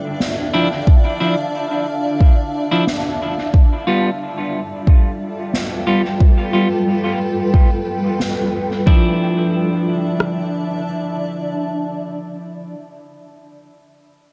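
Ambient dub at 90 BPM in D dorian, hazy and meditative, cut from a longer piece: a blurred, detuned granular cloud pad holds sustained chords moving from Dmadd9 to G7 and back, bathed in its own reverb. A deep house drum kit with a deep, tape-warm kick and rim click sits up front, joined by a natural acoustic snare drum with small room ambience and dub echo that stops at 8.3 seconds. Clean, picked electric guitar stabs, low-pass filtered and thrown into dub echo, run to 12.7 seconds in a lightly reverberant, echo-heavy mix.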